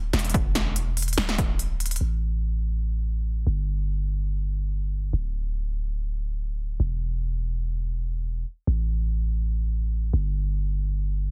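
A lightly swung half-time groove at 144 BPM in 4/4 opens this playful, lush future bass piece with a drop, where a deep, mellow, sine-toned 808-style bass pumping under sidechain is joined first by an overdriven big-room dance kit of crisp hi-hats and a punchy, up-front snare and then by a layered electronic kick, before a short break and a drum fill at 1.8 seconds give way at 2.0 seconds to the boomy bass carrying on alone until 11.3 seconds in a dry, dense, heavily limited modern mix.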